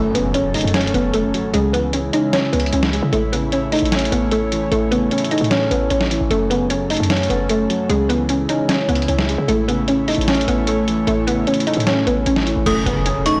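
A hollow, warbling square-wave pluck carries the melody in this brooding, melancholic trap excerpt, its detuned, vintage tone softened by chorus. Beneath it, a felt-muted upright piano plays intimate, dark accompaniment with audible action noise, while an airy, breathy pad with chorus holds sustained chords in the background. A short, punchy 808-style bass with a tight, decaying sine body anchors the low end, and a lo-fi sampler-style kit of muffled, pitched-down snare, hi-hat and crash drives a half-time feel. An electronic impact sits in the background at the start and again at 12.7 seconds, when a bright, inharmonic FM bell enters with chorus, phaser and digital delay on its ringing tone. The whole recording is blown-out and overdriven, with a light reverb around it, and it is cut from a longer piece.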